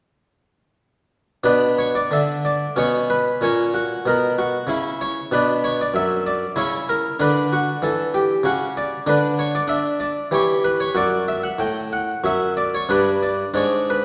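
A baroque-style classical suite movement for solo harpsichord in triple time, grave yet flowing, played with a rubato feel in this short excerpt cut from a longer piece. The harpsichord enters at 1.4 seconds and sits up front, its plucked, brilliant Italian-style tone thickened by octave strings as it ranges from F#2 to G5. A wet recital-hall reverb lends the sound the spacious resonance of a church or concert hall, while the harmony moves through minor, suspended and diminished colours before passing through a G chord to a G-sharp diminished chord at the close.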